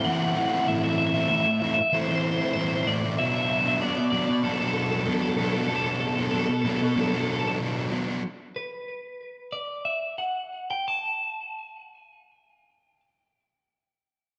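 In straight 4/4 at 74-96 BPM, this melancholic, cathartic rock excerpt moves from Am to Bm7 as a sludgy, overdriven, double-tracked guitar riff with slapback echo drives alongside a bright, twangy, compressed twelve-string electric guitar melody sitting up front with slapback echo and digital delay. At 8.2 seconds the riff drops out and the chords stop, leaving the clean twelve-string alone as the tempo slows until it ends at 13.0 seconds. A lush hall reverb gives the whole recording a big arena sound.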